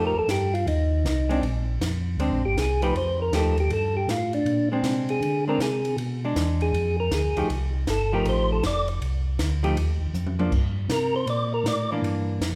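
A percussive tonewheel organ opens on the melody at 0.0 s, joined at once by a mellow organ bass line and a hollow-body archtop guitar in accompaniment, with a compact cocktail drum kit entering at 0.3 s. This bluesy, swinging soul jazz organ trio sits in F mixolydian at 158 BPM in 4/4, with a 65% swing on the eighth notes, and is cut from a longer piece. The lead organ is round and clean, its third-harmonic percussion turning through a slow rotary speaker, while the up-front bass organ carries a light overdrive, chorus vibrato and its own slow rotary speaker. The picked electric guitar has a clean, shadowy miked tone, and the dry acoustic drums bring dark cymbals, a high-tuned snare and a punchy kick, with a short drum fill at 10.1 s. The harmony runs through ninth chords and a diminished chord before reaching G minor and a rootless C9, and the room adds a moderate recital-hall reverb.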